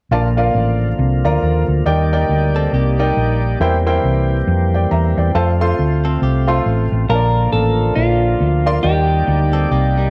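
A round, punchy hollow-body short-scale electric bass sits up front in this uptempo gospel excerpt, its dark, amped fingered tone anchoring a swung 138 BPM groove in 4/4 and Bb major. A clear, intimate grand piano carries the accompaniment with audible action noise, and a bright, reedy tonewheel organ holds sustained chords through a slow rotary speaker with a touch of key click. At 2.6 seconds a direct-recorded, compressed electric guitar adds a picked second line. At 7.1 seconds the harmony moves back to Bbmaj7, a twangy clean electric guitar takes the melody with tape echo, and a very quiet, mellow French horn section adds classical-style sustained chords underneath. The piano drops out at 9.5 seconds. The uplifting, reverent mood is framed by moderate spring reverb and small room ambience, with the piano, organ and both guitars carrying the texture of a home cassette recording.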